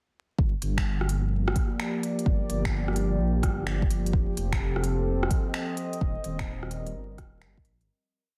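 A skittering, shuffled two-step groove at 128 BPM in 4/4, swung on the sixteenths, starts at 0.4 seconds with a muffled, deep electronic kick sitting up front, joined by crisp closed hi-hats, rim clicks and finger snaps from an organic-sounding electronic kit set in a large room. This is rainy, nocturnal future garage in G minor, with a dark, detuned sawtooth bass rumbling low in a dub-style line, its beating tone thickened by tube saturation and given a sidechain pump. From 1.1 seconds a warbling, nostalgic, lo-fi pad drifts in with slowly shifting sustained chords, moving from Gm7 to F7 and then Cm7/Eb, softened by chorus and its own reverb and breathing with sidechain pumping. The mix is dense and heavily limited, dusted with vinyl crackle and light reverb, and the whole piece begins fading out at 5.4 seconds.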